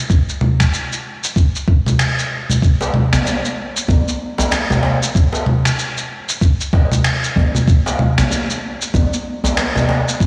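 A swung 95 BPM downtempo groove in 4/4 carries this meditative cut from a longer piece, with a gritty, thumpy electronic kick up front that drops out from 2.0 to 2.6 seconds, compressed sampler-style shaker, congas and finger snaps with soft clipping on the snare, and a deep djembe with metal rattles entering at 2.8 seconds, all set in a blown-out, overdriven recording washed in concert-hall reverb.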